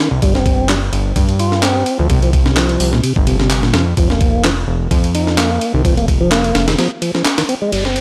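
Breakbeat at 128 BPM with a slight swing on the sixteenths, this energetic, gritty clip from a longer piece opens on a tonewheel organ riff with key click, vibrato and slow rotary speaker, soon joined by a fat, detuned sawtooth bass with a filter sweep and transformer saturation, up front with the drums. A compressed sampler-style breakbeat kit with a thumpy kick and high-tuned snare drives it, layered with tape-warm electronic handclaps re-recorded in a large room. After a break from 6.8 to 7.7 seconds, an electronic downlifter closes the dry hardware recording.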